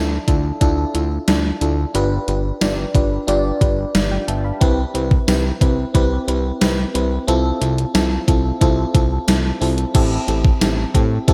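This 1980s-style pop fragment, cut from a longer piece, feels dramatic and nostalgic in a straight 4/4 groove. A glassy FM electric piano with a bell-like attack, a warbling chorus and a noise layer carries the accompaniment, sitting up front beside a fat, detuned sawtooth analog bass whose filter sweep keeps its sustained tone evolving. At 0.3 s an electronic, sampler-style drum machine comes in with a thumpy kick, a gated reverb snare, hi-hat, crash cymbal and tambourine, overdriven and re-recorded in a small room, and it sits up front. A very quiet, jingly acoustic tambourine, close and dry, joins at 1.3 s. The chords move from Dmadd9 through G7, Cmaj7 and Fmaj7/C before shifting to Am7 at 9.9 s as a new section begins. A lush hall reverb and digital ambience frame the bright 1980s-style digital production.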